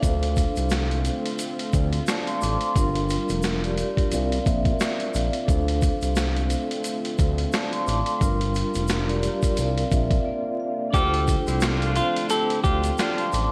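A tough, moody boom-bap hip-hop groove at 88 BPM opens with a gritty, thumpy sampler-style kit with a high-tuned snare, a smooth gliding synth bass, a close-miked vibraphone with fast motor vibrato and cassette-tape coloring, a deep detuned analog pad in the background, and a grainy tube shaker, all over light reverb and vinyl crackle as the chords move through Dm7, Gm7 and C9sus4. After a brief break at 10.3 seconds, a dark, clean semi-hollow electric guitar carries the melody from 10.9 seconds, joined by punchy, edgy saxophone section stabs, both touched with slapback echo, in this swung excerpt cut from a longer piece.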